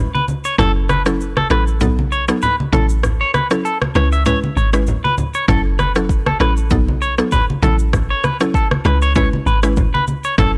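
Afrobeats at 98 BPM in 4/4, this mellow, sultry cut from a longer piece moves with a light sixteenth-note swing over a cycle of F#m7, B7, A6 and C#m7 chords. A deep log drum bass sits up front with a round, dark, fast-attacking tone that decays between hits, anchoring the low end from the very start. A clean, twangy electric guitar plays a picked riff, also forward in the mix, while a woody, mallet-like synth pluck with a short decay and a chorus shimmer fills in the accompaniment from 0.6 seconds. Bright, thin-skinned congas with a small-room acoustic feel play alongside an electronic afro-pop kit of deep kick, rim click and shaker, the kit roughened by vintage 12-bit sampler grit. The opening stretch to 5.5 seconds is marked as a break, and the whole recording has a dry, gritty hardware character with transformer saturation and little reverb.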